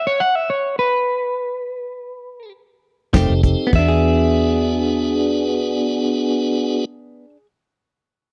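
Straight-eighth soul blues with a laid-back, rollicking mood, this cut from a longer piece opens with a dark, slightly broken-up electric guitar playing the melody alone through spring reverb until 3.1 seconds. The band then enters over an F9 to E7 change: a piping, scooped tonewheel organ with key click, light overdrive and a slow rotary speaker; bright, twangy stabs from a clean, compressed, direct-recorded electric guitar; and a round, foam-muted, fingered vintage bass. An up-front soul drum kit with a fat snare, tight kick, crash, hi-hat, tambourine and a rolled-off top plays only until 3.9 seconds, all captured in a dry, close, 1970s-style studio sound.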